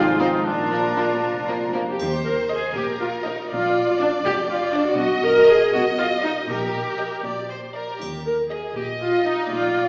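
Magical and playful, this whimsical cinematic cue in Eb major moves in 6/8 at 80 BPM, with an up-front viola section and an expressive, close second violin section alongside a clear, intense violin melody, while a mellow cor anglais, a soft-attacked clarinet, a very quiet French horn section and a distant, airy flute ensemble color only the opening until 1.7 s, smooth cellos and a distant double bass section hold the bass, and a dry triangle sounds in the background from 2.0 s and again at 8.0 s, heard in a reverberant recital hall with a small-speaker sound.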